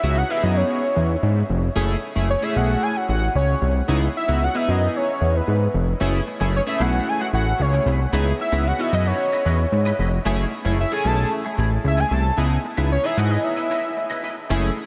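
A fat, detuned analog bass sits up front in this late-night, danceable funk excerpt, its thick sawtooth tone carrying a filter sweep and a fast, decaying attack from E#1 to G#2. Above it, a nasal, mellow analog lead with vibrato sings the melody between B4 and A5, dressed in chorus and a diffuse ambient delay, while a glossy, retro polysynth built from pulse-width-modulated and sawtooth tones holds sustained chords between A3 and G#4. At 6.0 seconds a bright, clean semi-hollow electric guitar joins in the background with a picked, compressed riff, colored by tube saturation and ensemble chorus. The tempo is a straight 113 BPM in 4/4, in F# dorian, with the harmony alternating between C#m9 and F#m9 roughly every two seconds. A huge ambient reverb with an 8.4-second tail soaks the dreamy mix, and a short break arrives at 13.4 seconds before the passage closes.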